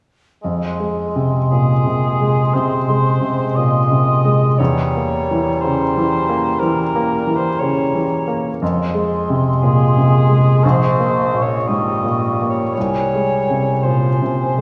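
Classical in F minor at a slow 58 BPM with a rubato, uneven pulse, this brooding, tragic fragment of a longer piece sets a clear, up-front grand piano melody low in the keyboard, its short sustain and audible action noise giving it an intimate, polished presence. A clear, present bassoon with light vibrato and a soft attack plays accompaniment, while an airy, hollow small flute group with vibrato drifts high in the background and a warm cor anglais joins at 1.5 s as a second line. The chords move from Fm through Edim7 and Gdim/Bb before settling on Fm/C, all bathed in a wet concert hall reverb.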